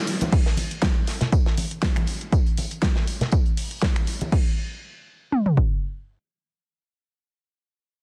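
Built on a 4/4 house groove at 120 BPM with a light 55% swing on the sixteenths, this short excerpt from a longer piece carries a warm, deep mood. After a brief break, the overdriven kick and toms of a deep house kit punch in up front at 0.3 s and hold on until 5.7 s. A second layer from the same electronic kit, carrying a fat snare with crash, ride, hi-hat, shaker and finger snaps, shares that overdrive and the grit of an old 12-bit sampler. Congas and bongos, recorded acoustically in a small room, pump against the beat. In the background sits a tight acoustic kit from a studio room with a mid-forward, medium-tuned snare, hi-hat and tambourine, its hats and percussion filtered and pumping. Light studio reverb frames a dense, heavily limited modern master.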